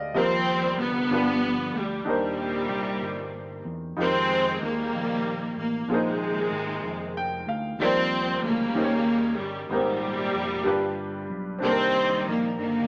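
A clear, worn grand piano and a dark, round electric bass open this jubilant, soulful slow gospel cut in 6/8 at 63 BPM in Eb major, with a lush, up-front string section carrying the vibrato-rich melody from 0.2 s, while the piano adds a fill at 6.8 s over rich extended chords like Cm9 and Abmaj9, all heard as a band playing live in one room through a small speaker with moderate reverb.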